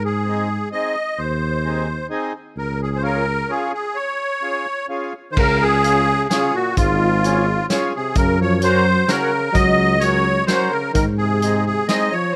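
Alpine folk dance-band music in a bouncy, festive 3/4 at 129 BPM with a light swing, this short cut from a longer piece sits in Db major and moves from Ab to Db, Gb and back to Ab. A shimmering musette accordion carries the melody up front over a mellow tuba bass and a full, dark accordion accompaniment, with a euphonium second line and a loose, gritty acoustic drum kit of punchy kick, snare, hi-hat and crash arriving together around 5.4 seconds as the opening section repeats. Close, detailed microphones and light reverb keep the parts intimate, with the euphonium and tuba each carrying a light vibrato.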